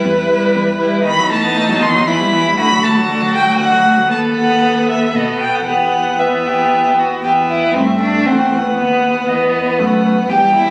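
A rich, expressive first violin carries the melody up front, singing with vibrato and portamento from B4 to C6 while sounding slightly distant. This is a quick, restless and dramatic classical-period movement for string quartet in E minor, in 3/4 at 118 BPM, cut from a longer piece and tuned to A4 = 443 Hz. Beneath it, a second violin plays a smooth, even line with vibrato, while a clear, focused viola fills in the accompaniment and a cello, bowed with vibrato and its own touches of portamento, supplies the bass from 0.1 seconds. The harmony moves between E minor and B7, passing through D and F#m7b5 over E, and the opening phrase returns at 7.2 seconds. A recital-hall reverb bathes the quartet, captured on a phone in the room with a club-like reverb.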